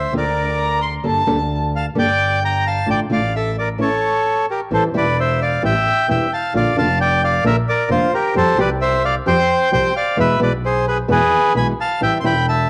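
A reedy, bright bandoneon carries the melody up front in this passionate, dramatic tango fragment, joined from the start by a single bowed double bass that sounds warm, smooth and even, with vibrato. A fingerpicked acoustic nylon-string guitar enters at 0.1 seconds, small and shadowy in tone, filling out the accompaniment. For a brief moment, from 0.6 to 1.6 seconds, one bowed violin adds a dark, woody second line with vibrato, sitting up front yet sounding distant. The rubato feel lets the phrasing breathe in 4/4, and a second section begins at 4.7 seconds. The bandoneon, guitar and violin carry a cassette-tape character, while a moderate spring reverb and small room ambience give this home recording an intimate setting.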